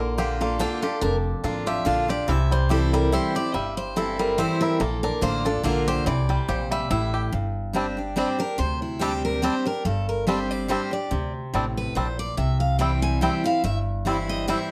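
A swung 3/4 lilt drives this lively bluegrass cut, where a bright dreadnought guitar takes a solo over the first 7.3 seconds, with a twangy fingerpicked banjo, a full-bodied picked rhythm guitar and a woody, thumpy upright bass filling out a moderate studio room as the chords move from Bb and C to Gsus4.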